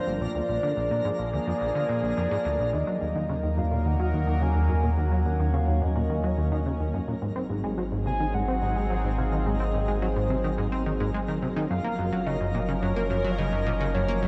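A steady, straight 4/4 pulse at 107 BPM drives this hypnotic, cosmic stretch of sequencer-driven space music in Eb dorian, cut from a longer piece, where a punchy, funky analog bass riff plucks up front beside a soft octave-layered lead whose round triangle tone carries chorus, vibrato, shimmer reverb and tape echo. Beneath them a detuned sawtooth pad sustains sweeping, resonant chords through Bb7, Ebm, Ab7 and Gbmaj7, while a twinkling granular texture sparkles in the background and fades in from 2.7 seconds. At that same point a deep sine sub bass enters, all of it set in a vast, echoing cathedral-like space.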